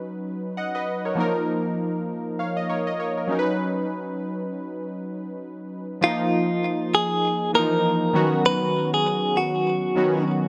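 A bright, twangy clean electric guitar carries the melody in this sultry, mellow afrobeats excerpt, entering at 6.0 seconds and holding to a narrow span between F4 and B4. Recorded direct and compressed, its picked notes sit up front, colored by tremolo and a digital delay. Beneath it, analog keys with a round, detuned sawtooth tone and a filter sweep provide the accompaniment from the start, their fast attack decaying under a chorus effect. The groove moves at 99 BPM in 4/4 in E-flat minor, with a 58% swing on the sixteenths, while the harmony alternates between Badd9 and Ebsus2. Light reverb and digital ambience give the mix a soft sense of space as the keys play alone for the first six seconds before the guitar joins for the second section.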